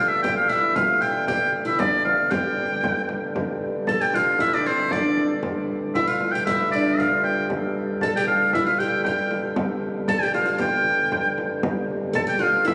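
A bright, punchy shawm with vibrato leads from the opening with a folk-style melody carrying a slapback echo, over a plucked, woody oud second line and a reedy, breathing pedal harmonium drone, with a deep frame drum played with soft hands joining at 0.2 s. This mysterious, driving medieval dance in 2/4 sits in a wet church reverb, sounding as if captured on a phone in the room, with the shawm up front. Cut from a longer piece, it moves from its opening section into a new one at 3.4 s.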